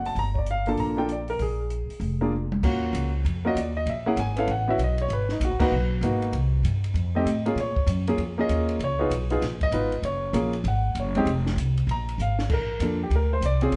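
Woody, thumpy upright bass on gut strings and an up-front baby grand piano with short sustain and plate reverb open this moody, swinging jazz piano trio excerpt in Eb minor at 195 BPM, with a compact cocktail kit joining almost at once, its dark, smooth sound built on a high-tuned snare, punchy kick, ride, hi-hat, crash and toms. The piano carries the melody over changes that move from Gm7 through Ebm7, Abm7 and Db7, while the drums add fills, the band hits an accent at 5.6 seconds, and the piano takes a brief solo from 12.5 seconds. The trio sits in a large studio with moderate reverb, heard from further back, with a rolled-off, mellow top end.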